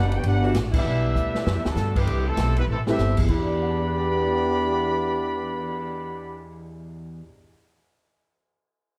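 This short excerpt from a longer big band swing piece has a dark, warm studio sound with a moderate large-room reverb, and its mood is sultry and brassy. A brilliant, tight trumpet section with light vibrato carries the melody while a mellow trombone section plays a second line beneath it, both sounding from the start until about 6.5 seconds. A woody, thumpy pizzicato upright bass sits up front under the horns, and a natural, acoustic drum kit with a punchy kick and medium-tuned snare swings on hi-hat, ride, crash and cymbal swells, adding fills along the way. Early on, a close-miked saxophone section holds bright sustained chords in the background, and a band accent lands at 0.7 seconds. From 2.9 seconds an intimate concert grand piano with deep bass and audible action noise takes up the accompaniment, outlasting the other parts as the harmony moves from Em9 through Cmaj7 and Am7 back to Em9.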